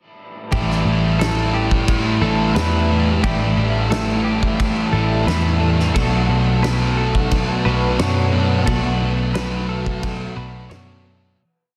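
Shoegaze and dream pop rock with a dreamy, hazy mood, where an up-front, dark fuzz guitar strums chords with whammy-bar dips over a slightly broken-up guitar's ringing chords swathed in reverse reverb, a twangy, direct-recorded clean guitar picks a chorused, slapback-echoed arpeggio ostinato in the background, a round, foam-muted vintage bass plays a dotted figure, a distant, roomy indie drum kit with a fat snare and punchy kick drives a big rock groove, and a deep, detuned sawtooth pad enters at 1.9 seconds with slow-attack sustained chords, all moving from A7sus4 to Bm7 before fading out from 8.7 seconds.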